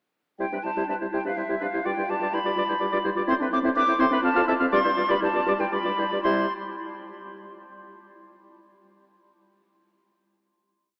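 A quick classical-period movement for wind quintet in C major and 3/4, this complete piece feels graceful and cheerful, moving at 112-129 BPM with a rubato feel and slowing down from 2.6 to 6.2 seconds. A silver concert flute carries the melody, sounding airy and metallic with vibrato and tongued notes, close-miked and up front. Beneath it, a warm oboe with light vibrato sings a second line from a distance, while a dark, smooth-topped French horn and a mellow clarinet supply accompaniment of driving ostinato figures and sustained chords. The mellow bassoon anchors the bass with its own ostinato and sustained low notes, all five voices entering together at 0.4 seconds. The harmony moves from C through G7, Am, F and G7sus4 before settling on a final C chord at 6.2 seconds, and the whole quintet sits in a vast, echoing cathedral reverb with the sound of AM radio.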